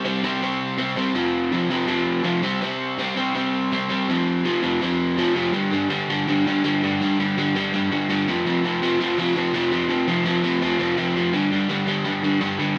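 At a driving 165 BPM in straight 4/4, this aggressive, urgent punk passage, cut from a longer piece, is carried entirely by a lone overdriven electric guitar playing from 0.0 to 12.8 seconds. The picked guitar is bright and compressed, double-tracked and placed up front, ranging from F2 to C4. The first section moves between C5 and F5 chords, and at 5.5 seconds a second section shifts the weight toward G5, with a return to F5 before closing on G5. A wet studio reverb with a 0.8-second decay gives the sound the air of a band playing live together in one room.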